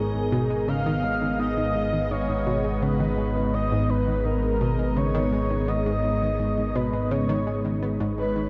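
Ambient, sequencer-driven space music with an expansive, hypnotic mood, cut from a longer piece and moving in a straight 4/4 feel over a single minor chord. A breathy, flute-like synth lead carries the melody up front, its soft tone colored by vibrato, analog chorus and tape echo. Beneath it, a sweeping resonant pad holds evolving, warbling chords with a slow attack and long release, thickened by lush chorus. An analog pluck plays a detuned, wave-folded riff with a fast, decaying attack and a filter sweep running through the whole passage, while a fat, thick bass sustains a single low note. Far in the background, a bubbling texture steps randomly through its filter, and the whole mix sits in a huge, wet reverb with a dark, rolled-off top.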